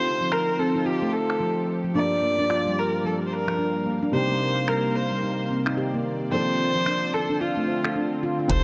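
Meditative and warm, this organic downtempo passage, cut from a longer piece, moves with a gentle swing over a progression of F7, Gm7, Cm7 and Dm7. A clear kamancheh carries the melody up front, its bowed line smooth and even with vibrato and portamento, touched by delay yet sounding distant. A felt-muted upright piano supplies soft, mellow accompaniment, intimate and dark with audible action noise, filtered and pumping under sidechain with its own delay. A bright, string-like drone with a slow attack, vibrato and its own reverb holds sustained chords in the background, while a warm, ringing handpan joins at 0.2 seconds with delayed arpeggios. Smooth hats, cabasa and finger snaps from a produced afro-pop kit sit low-passed in the background from 0.3 seconds, and only at 8.5 seconds do a round, deep analog bass and a knocking electronic kick arrive. A huge ambient reverb with a long tail wraps the mix in space.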